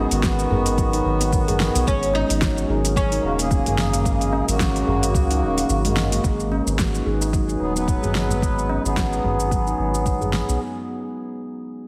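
A warm, hypnotic organic downtempo excerpt in G# minor at 110 BPM, with a swung 4/4 groove moving from G#m7 to F# and back. A woody, plectrum-plucked oud with vintage sampler grit and delay carries the melody until 5.7 seconds, over a reedy, breathing harmonium with sidechain pumping and a filter sweep from 6.2 seconds, a ringing stainless-steel handpan playing arpeggios that is also swept, a very quiet warbling tape-like pad, and a round, nasal analog bass. A layered deep house kit with a fat snare and metallic hats, a deep electronic kick that drops out between 5.7 and 6.2 seconds, and a high-tuned tabla in the background sit in a lush hall reverb, all under a heavily compressed radio-like sound.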